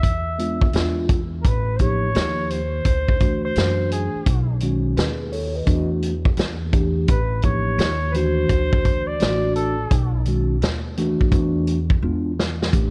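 Cool and mellow, this jazz-hop excerpt pairs a distant, roomy trumpet solo with light vibrato, which drops out at 10.2 seconds, against woody pizzicato upright bass, a clean tine electric piano through a phaser entering at 0.4 seconds, and an up-front vintage drum kit with punchy kick and 12-bit sampler grit that closes on a fill, all set in a dark, small-room production over chords like E7b9 and Dadd9.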